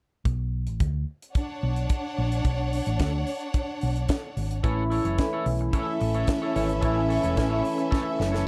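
Glamorous and driving, this short disco excerpt in B minor moves at 110 BPM in a straight 4/4, cut from a longer piece and set in a small room with light reverb and a dark production. A tight funk drum kit with a high-tuned snare, tight kick and hi-hat sits up front alongside a round, amped hollow-body short-scale bass played with the fingers, both starting at 0.3 seconds over a Bmadd9 chord. At 1.3 seconds a lush symphonic violin section joins as a second line, close, biting and intense with vibrato. When the harmony moves to A at 4.6 seconds, the arrangement fills out with a barky tine electric piano through a combo amp with phaser, a twangy picked electric guitar at the edge of break-up, and a clear French horn section holding sustained chords in the background with light vibrato. A drum fill closes the passage at 7.9 seconds.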